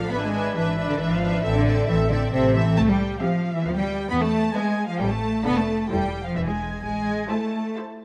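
An intense, up-front cello section anchors this spirited, quick classical-period movement for string orchestra in A minor, in 3/4 at 134 BPM, with the double basses bowing a smooth, even low line beneath it. A dark, woody second violin line and a focused, distant viola accompaniment fill the middle with lush vibrato, while clear first violins carry the melody from the background. Cut from a longer piece, the passage moves from E7/G# through Am, C and Dm/F before settling on Am at 6.8 seconds, set in a moderate scoring-stage reverb.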